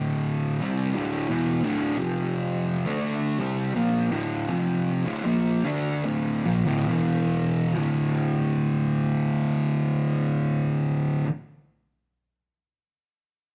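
In a straight 4/4 pulse that drifts between 66 and 87 BPM, this brief metal fragment slows down between 1.6 and 7.7 seconds, giving it a sludgy, ominous drag. A single distorted fuzz guitar carries everything as a solo part, picked and double-tracked, sitting up front across a range from D2 to D4. It moves through a dark D minor progression, from D5 to F5 and into Dm, then on to E5 before settling back on D5 as a second passage begins at 7.7 seconds. The guitar's tone is warm and fuzzy, with a light reverb around it. The rough rehearsal-room sound adds warm saturation and audible lossy compression artefacts, lending the clip a raw, murky character.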